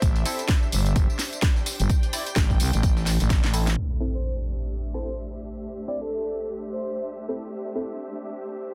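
A growling, thick FM bass sits up front in this gritty, bouncy bass house excerpt, overdriven and pumping alongside a punchy, overdriven electronic kick. A house kit adds cracking snare, bright hats and tambourine, while a very quiet, pitched-up breakbeat layer brings compressed, tape-warm sampler grit, all with a swung sixteenth-note feel. Over this, a soft, breathy flute-like lead carries the melody with vibrato, chorus, cassette tape colour and dub echo, and a nasal, band-passed chord stab with phaser and echo cuts through. Lush, woody bowed strings hold a pumping texture underneath for the whole passage. A drum fill leads into an electronic impact at 3.8 seconds, where the bass and drums drop away; the lead returns at 4.1 seconds as a filter sweep runs over the stabs until 8.7 seconds, all inside a dense, heavily limited, low-passed master.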